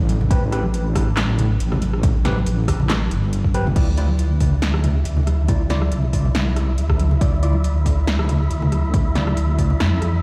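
A half-time 4/4 groove at 139 BPM, with a light 16th-note swing, drives this dark, cavernous slice of deep dubstep in D dorian, cut from a longer piece and opening straight into a drop. An overdriven electronic kick and a layered drum kit, with a punchy snare, metallic hi-hats, rim clicks, handclaps and crash cymbal, sound as if re-recorded through a big sound system in a bare stone room. Bright, thin-skinned congas with dub echo sit in the background. Up front, a deep, compressed wobble bass built from sawtooth and sine tones rolls through a chorus, while a barky, gritty tine electric piano fires off stabs through a combo amp, phaser and dub echo. A very quiet, detuned ambient pad holds an Am7 chord until 3.8 seconds, when the harmony shifts to Dmadd9 and an airy, breathy wind-like noise texture drifts in at 4.7 seconds with its own reverb, all over a bed of vinyl crackle.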